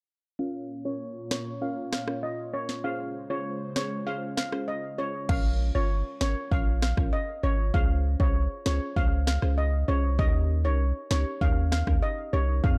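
Dark and close, with little reverb, this sultry, tough dancehall excerpt opens on a dry, shimmering steel pan carrying the melody over a glassy, crystalline wavetable pluck, softened by chorus and a low-pass filter that sweeps through the opening section. An airy, breathy pad with a nasal edge holds sustained chords beneath them, its sidechain pumping giving the harmony a breathing motion before it drops out at 5.3 seconds. The electronic afro-pop kit enters at 1.3 seconds with a deep kick, sharp snare, rim clicks and crash cymbal, and its kick falls away briefly just before the second section. When that section arrives, a punchy sine sub bass with a pitch-drop attack joins up front beside the tape-warm drums. Underneath, the harmony moves from a minor chord to a major-seventh colour and finally settles on a dominant seventh.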